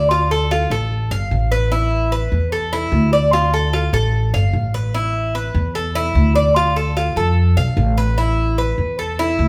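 The recording has the open feel of a band playing live together in a large studio, with a moderate reverb that lingers for about 1.2 seconds around both players, who sit up front. This short cut from a longer piece is Cuban son in the guajira style, sultry and warm, moving at 149 BPM in a straight 4/4, tuned slightly low at A4 = 439 Hz. The Cuban tres plays arpeggios throughout, picked on paired strings, some doubled at the octave, which gives it a metallic, chiming edge in its upper-middle register. Beneath it, the plucked upright bass supplies a woody, thumpy foundation in its low register. The harmony rocks back and forth between D minor and A suspended second for the full 9.5 seconds, keeping the groove hypnotic and unresolved.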